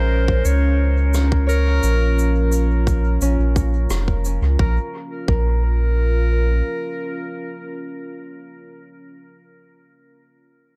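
This ambient dub fragment, cut from a longer piece, settles into a meditative, spacious mood at 87 BPM in a straight 4/4, resting on a Bb minor chord throughout. A bright, classical-style solo clarinet carries the melody with dub echo, while a deep, moody pad of detuned sawtooth and sine layers with a sub octave holds sustained chords beneath it, its slow attack, long release, moving notch, chorus and built-in reverb giving it a dark, enveloping body. A fingerpicked Celtic harp rings out arpeggios through analog delay in the background, and a glassy texture of drifting overtones floats quietly behind it until 4.6 seconds. Up front, a round, warm analog bass with a fast attack and a filter sweep anchors the low end until 6.6 seconds, joined from 0.3 seconds by a tight, tape-warm electronic kick re-recorded in a large room. Distant, roomy cabasa and rim click add light percussion with dub echo, and the whole echo-heavy mix sits in generous studio reverb.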